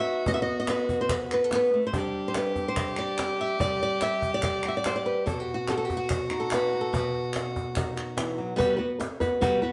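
A straight 4/4 pulse from a snappy cajon with snares and crisp, saturated palmas hand claps drives this fiery, mournful flamenco fragment, where a bright, fingerpicked flamenco guitar carries the melody up front while a single bowed violin, soft in attack and played sul tasto, floats a pure second line until 8.4 s, the band playing live in a wet stone room before a short closing section settles on a Gmaj7 chord at 8.6 s.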